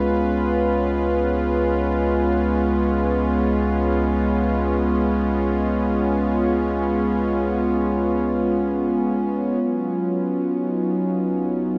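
A detuned sawtooth pad, smooth and mellow with a soft attack and chorus, sits up front over a dark, rumbling drone with its own built-in reverb, both sounding from the start of this free-time ambient fragment. The pad sustains a C#7 chord before shifting to Badd9 at 9.6 s, giving the passage a luminous, gently warm mood. Everything is soaked in a long cathedral reverb with a cassette-tape character, creating a dreamy haze.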